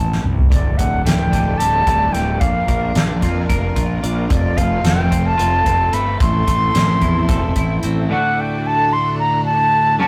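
In a lopsided 7/8 at 221 eighth-note beats per minute, this trippy, mysterious psychedelic rock fragment opens with a drum fill on a soft-mallet kit with a fat snare and boomy kick, while a punchy, round fuzz bass drives beneath a pure, straight-toned concert flute melody up front. A bright, twangy twelve-string electric guitar riff and shimmering vintage string-machine violins with ensemble chorus enter at 0.5 seconds and move through Dsus4, Bb and F before returning to Am. The bass and drums drop out near 8.1 seconds, leaving flute, guitar and strings over a closing D chord, all in a rough rehearsal-room sound with light reverb and warm saturation.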